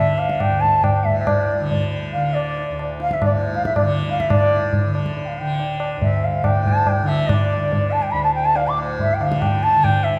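In a straight 7/4 at 140 BPM that speeds up throughout, this meditative, solemn Hindustani excerpt in raga Bhimpalasi on D sets a pure, vibrato-laden bansuri with tape echo in the upper register over a buzzing, shimmering tanpura drone and high-tuned, ringing tabla entering at 0.2 seconds, all in a wet recital-hall reverb, with a new section arriving at 4.3 seconds.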